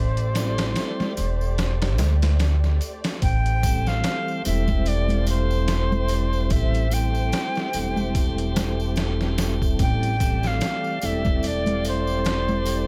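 A swung trip hop groove from a gritty, pitched-down sampler-style drum kit with a thumpy kick and up-front woody pizzicato upright bass carries this cinematic, melancholic excerpt, as an airy, reedy jazz flute with vintage sampler grit and tape echo sings the melody over a piping tonewheel organ with key click and harmonic tremolo, a dark, distant bowed violin section holding sustained chords, and soft-handed tambourine and congas tucked in the background, all set in studio reverb.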